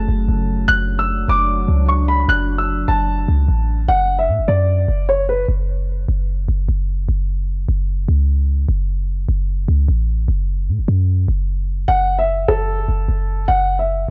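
A gritty, dry cassette-tape recording with a touch of studio reverb frames this brooding, eerie half-time trap excerpt, cut from a longer piece. A dark, mellow concert grand piano carries the up-front melody through tape echo, over a moody, detuned ambient pad whose sustained chords, moving from F#m to D/F#, end at 3.9 seconds. A boomy, sine-like 808 bass holds the low end throughout, standing alone through the break from 5.5 seconds until the piano returns at 11.9 seconds.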